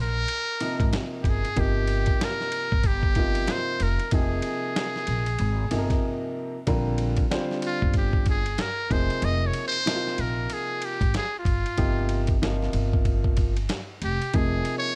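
A buzzy, breathy muted trumpet sits up front, shaping the melody with light vibrato and scooped notes before a short break at 6.0 seconds gives way to its solo from 6.7 seconds. Underneath, a steel-strung pizzicato upright bass, a gritty, compressed sampler-style drum kit with a thumpy kick, snare, hi-hat and ride, and a smooth, vintage upright piano with long sustain carry a swung 94 BPM groove in F minor, moving through Fm7, F9sus4 and Bbadd9 chords. This smoky, cool jazz-hop excerpt sits in a small room ambience.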